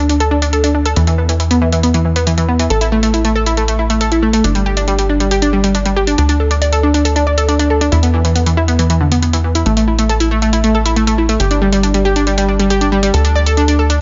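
Euphoric yet bittersweet, this uplifting trance passage, cut from a longer piece, sets a round, warbling analog pluck playing arpeggios up front with chorus and delay over a tight, punchy sequencer bass with a saturated sawtooth edge. An overdriven electronic hi-hat enters at 0.1 s. The harmony cycles through D5, E5, A5 and G5, all in light reverb with a high end that stops at 7.5 kHz.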